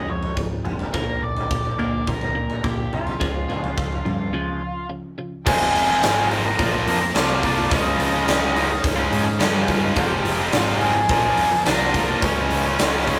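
A straight 4/4 pulse at 106 BPM drives this brooding, angsty quiet-loud alternative rock excerpt, where a dark octave-fuzz lead melody rides over a growling, round overdriven bass and an up-front big rock drum kit in a bright stone room, with a twangy clean twelve-string electric guitar with phaser arpeggiating until 5.4 seconds. After a break from 4.3 seconds, a very quiet, scooped distorted guitar riff enters at 5.4 seconds, and at 5.5 seconds a tight, bright distorted guitar riff arrives alongside a second very quiet, double-tracked distorted guitar riff and a floating, sul tasto string section holding soft sustained chords, all in a rough rehearsal-room recording with light reverb.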